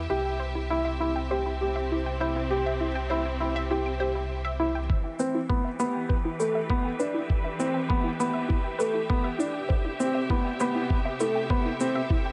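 Cinematic and intimate, this short cut from a longer piano and strings electronica piece moves at 100 BPM in 4/4 with a straight feel, set in E minor over a chord path of C, Em and back to C. A woody, slightly detuned upright piano sits up front with a riff of short sustain and a touch of digital delay, while a distant, lush symphonic string section holds bowed chords with vibrato under a low-pass filter and sidechain pumping. An analog pluck in the background spins bright, detuned arpeggios coloured by chorus, ring modulation and digital delay, and a round sine sub bass, deep and mellow, anchors the opening until 4.9 seconds. At that point a build-up begins, with a filter sweep on both the strings and the pluck, as a compressed, pitched-down, thumpy kick enters and an overdriven electronic shaker joins faintly at 5.2 seconds. A huge ambient reverb with a long tail surrounds the whole mix, and the top end stays soft and rounded.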